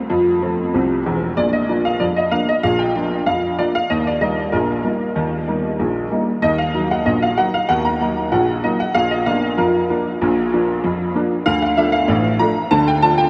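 Ragtime piano in a jaunty, playful mood, moving in a straight 2/4 with a tuning set slightly sharp of standard pitch. A lone upright piano carries the whole piece from 0.0 to 13.3 seconds, ranging from deep bass notes up into its upper register. Its tone is clear, woody and vintage, with a short sustain, and it sits up front in the mix, colored by analog chorus and delay. A huge ambient reverb with a long 8.6-second tail soaks the sound, giving the room a wet, dreamy haze that surrounds the smooth, clear tone of the keys. After a brief opening on F, a new section begins at 1.4 seconds and moves through Bb, Eb and Eb minor before returning to Bb and settling on D minor as this section, cut from a longer piece, ends.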